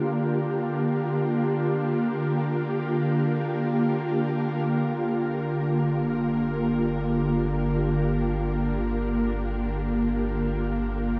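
In free time, this serene, spacious ambient excerpt opens on an ethereal, warbling pad holding a sustained Gm7 chord, its detuned vintage tone thickened by ensemble chorus and swept by a filter through the first 4.7 seconds. At 4.7 seconds a round, deep analog bass slips in beneath on a low G, sitting well under the up-front pad. A lush hall reverb with a 2.8-second decay bathes the whole, which is tuned slightly sharp to A4 = 441 Hz.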